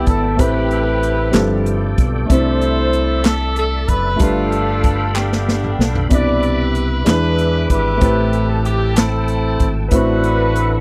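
Slow gospel in 6/8 at 63 BPM in C major, this short cut from a longer piece feels reverent and soulful, with a dry, close 1970s-style studio sound. A warm, tight horn section carries the melody up front with light vibrato in a jazz style, while a natural grand piano supplies the accompaniment underneath. A reedy, bright tonewheel organ holds sustained chords lower in the mix, its key click, chorus vibrato and slow rotary speaker adding shimmer. A round, dark fingered electric bass sits punchy and direct beside a swinging big-band drum kit of hi-hat, punchy kick, medium-tuned snare and toms, the kit the most forward part and marked by a fill from 5.2 to 6.1 seconds. Hollow group handclaps join at 1.3 seconds and drop out at 9.3, as the harmony moves through rich chords such as Am9, G9sus4, Cmaj9 and E7 before closing on D13/A.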